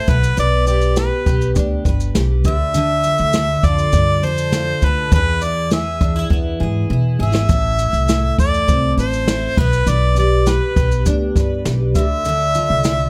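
A harmonica and a double-tracked, picked steel-string acoustic guitar open this reflective, wistful acoustic pop excerpt together, joined almost at once by upright bass and a brushed drum kit at a straight, unhurried 101 BPM in 4/4. The harmonica carries the melody up front with light vibrato, scooped notes and a smooth top, its tone glossed by plate reverb. Beneath it, the jumbo guitar supplies full-bodied accompaniment, also with plate reverb, moving through chords such as G/B, Dm, E and Am. The pizzicato upright bass sounds woody and thumpy on its steel strings. The drums, played with brushes, bring dark cymbals, a medium-tuned snare, a boomy kick and shaker in a small, natural-sounding room, with a fill from 6.3 to 7.5 seconds. A moderate studio reverb with a 0.5-second decay surrounds the whole track.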